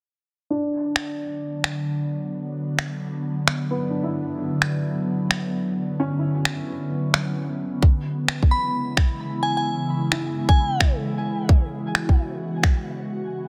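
A swung 131 BPM future garage groove in B dorian opens with a worn, woody upright piano from 0.5 seconds under a low-pass filter sweep, sidechain pumping and dub echo, joined by up-front electronic finger snaps and an ethereal, detuned pad with phaser and ensemble chorus, before a tight kick drum arrives at 7.8 seconds as the chords move from Bm to C#m7 and a glassy FM bell melody drifts through with chorus and dub echo in this nocturnal, melancholic excerpt cut from a longer piece.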